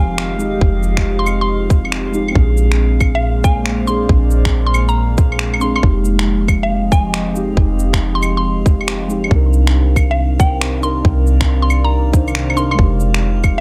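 A dark, warm production with little reverb opens this short future garage excerpt, a nocturnal, melancholic piece in F dorian at 138 BPM, its 4/4 groove swung on the sixteenths. A tight electronic kick sits up front from 0.6 seconds, while electronic finger snaps, shaker and claves, re-recorded in a large room, come in at 0.2 seconds. Underneath, a deep, round 808-style bass with tube saturation pumps against the kick, and a warbling, nostalgic tape-like pad holds sustained chords through chorus, phaser and its own reverb, moving from Fm7 to Bb7, back to Fm7, then on to Cm7 before returning to Fm7. Muted, intimate felt-like synth keys fill out the accompaniment with chorus, phaser and analog delay, also breathing with the sidechain. Above them a woody, mallet-like FM pluck carries the melody between F5 and C6, softened by chorus and analog delay, while a glassy texture of drifting overtones hovers calmly in the background on a single F5.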